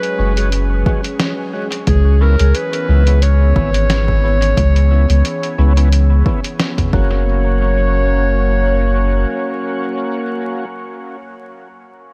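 Peaceful and hazy, this ambient dub excerpt moves at 89 BPM in F# mixolydian with a light 16th-note swing, as a warm, smooth-topped clarinet carries the melody through dub echo over an airy, breathy pad with chorus and a gritty, overdriven tonewheel organ playing percussive stabs through a slow rotary speaker. A deep, round sub bass sits up front, while a punchy electronic kick and a muffled, compressed sampler-style kit of hi-hat, snare and toms drop out by 7.1 seconds. The chords move from F#sus2 to C#m7 and resolve to F# at 6.9 seconds, all over a bed of vinyl crackle.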